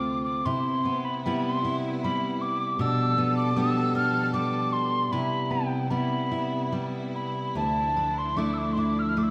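Mournful and haunting, this Celtic slow air in 3/4 drifts at about 76 BPM with free rubato: a pure, chiffy wooden whistle with expressive vibrato carries the melody up front over a full-bodied fingerpicked steel-string guitar, while a lush bowed string section holds smooth sustained chords beneath, the harmony moving through Cmaj7, G7/B and Dmadd9 in a concert hall reverb.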